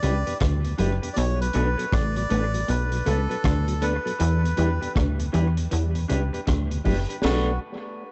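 A plucky analog bass sits up front in this short excerpt of laid-back, meditative roots reggae, its punchy, funky sawtooth and pulse-wave tone shaped by a fast-attack filter pluck that decays and evolves. The tempo is 79 BPM in 4/4 with a swung sixteenth feel, in B minor, with the chords moving between Em7 and Bm7. A reedy, breathy melodica carries the melody, close-miked and nasal with tape echo trailing it, while a clean, picked electric guitar adds accompaniment through its own tape echo. A round tonewheel organ with key click, a slow rotary speaker and analog delay stays in the background, and a very quiet, compressed semi-hollow guitar plays a low riff that stops at 7.0 seconds. The crunchy breakbeat kit sounds small-room and dark, with a high-tuned snare, kick, rim click, hi-hat and china cymbal feeding an analog delay. The mix is echo-heavy, with light reverb, tape saturation and nothing above 8.0 kHz.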